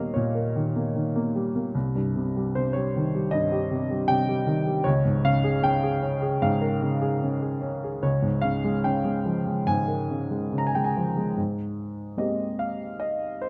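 In a freely flowing rubato 4/4, this peaceful, lyrical classical solo piano passage, taken from a longer piece, features a worn, up-front baby grand heard through close, detailed microphones and light reverb, drifting from Eb7 through Cm and Bbm7/Db before settling on a warm Abmaj9 at 11.4 seconds.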